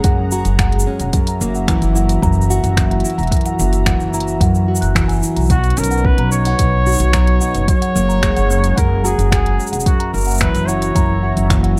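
This pastoral, hopeful folktronica excerpt opens with most of its parts together: fingerpicked nylon-string guitar arpeggios with a dark, classical tone and audible finger squeak, a woody pizzicato upright bass sitting up front, and a soft, tape-colored electronic kick. An organic electronic drum kit adds finger snaps, shaker and crisp hi-hats, re-recorded in a small room along with the kick. Above them, a bell-like celesta with soft felt hammers plays a delicate second line through a delay, while an analog pad holds smooth, detuned sustained chords with chorus, slow attack and long release in the background. At 5.5 seconds a clear flugelhorn enters with the melody, punchy yet distant and roomy, with vibrato and its own delay. The harmony moves between F#add9, F#7 and Badd9 in a straight, steady groove, and the whole excerpt sits in an intimate small-room ambience.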